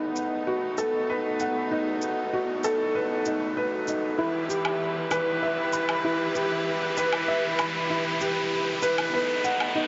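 A felt-muted upright piano sits up front in this short cut from a longer piano and strings electronica piece, playing a soft, intimate riff in its middle and upper register with a touch of delay. Beneath it, a rich symphonic string section holds sustained bowed chords with light vibrato and a close, biting intensity, while a very quiet, con sordino double bass section adds a dark, veiled foundation. An electronic riser runs through the whole 9.9 seconds as the passage builds, and layered electronic shaker and woodblock enter at 0.2 seconds, high-pass filtered. At 97 BPM in a straight 4/4 and E harmonic minor, the harmony moves from B7 to Em at 4.2 seconds and settles on B7 over E near the end. A huge ambient reverb and a dulled top end give the moving, cinematic mood a hazy, spacious glow.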